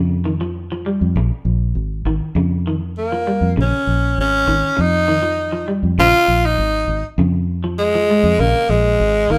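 Afrobeat at 100 BPM in a straight 4/4, this intense, driving excerpt from a longer piece sits on a single Bbm7 chord in Bb dorian. A fingered electric bass, dark, round and foam-muted, sits up front from the start and gives the groove a direct, amped weight. Beside it, an electric guitar at the edge of break-up plays picked arpeggios with a twangy, slightly broken-up tone bathed in spring reverb, sitting lower in the mix. At 3.0 s a raspy tenor saxophone takes the solo melody, close-miked and gritty, with vibrato and scooped notes in a pop style that pushes it to the front. The band plays live in one room with a moderate studio reverb of 0.8 s that keeps the sound close and cohesive.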